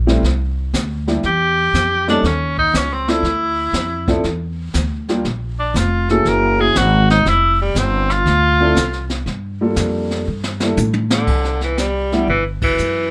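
Lightly reverberant and intimate, this relaxed small-group swing and bop fragment at 120 BPM sets a growly pizzicato upright bass and a boxy, woody upright piano with audible action noise alongside a brushed drum kit with dark cymbals and a boomy kick, while a clear, vintage tenor saxophone with vibrato enters at 1.3 s and solos up front ahead of a drum fill at 10.3 s and a band accent at 12.5 s.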